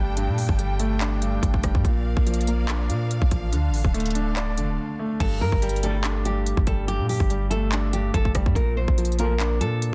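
Set in studio reverb with a dense, heavily limited modern master, this melancholic, eerie trap and hip hop excerpt moves at 143 BPM in a half-time feel, in G minor. A low-pass filtered concert grand piano with deep bass and short sustain carries the accompaniment over Gsus2, Bb and Dm chords. A rich, bowed string section with focused vibrato holds sustained chords until 5.2 seconds. Up front sit a deep, boomy 808-style bass with a sine-like, fast-attack, decaying tone and an electronic trap kit of hard-clipped kick, crisp hi-hats, handclaps, rim clicks and crash cymbal, and a short break arrives at 4.8 seconds. When the second section begins at 5.2 seconds, a full-bodied, fingerpicked nylon-string guitar takes the melody through low-pass filtering and delay, while a dark, distant brass ensemble adds brief, roomy stabs with delay in the background.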